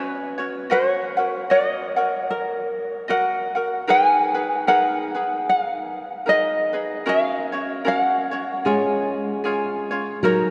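Hawaiian music at a relaxed, languid 76 BPM in 4/4, with a gentle swing on the eighth notes, heard as a short cut from a longer piece. A fingerpicked tenor ukulele carries the melody up front, its light, warm tone sitting high, while a second fingerpicked ukulele supplies the accompaniment just beneath it. The chords move from Bsus2 through D#m and G#madd9 to F#/C# before settling on C#. At 8.7 seconds a fingerpicked old ladder-braced acoustic guitar enters with a low second line, its dark, woody, boxy sound coloured by aged strings. The whole performance sits in a church or concert hall, bathed in a long, wet cathedral reverb that lets each note linger.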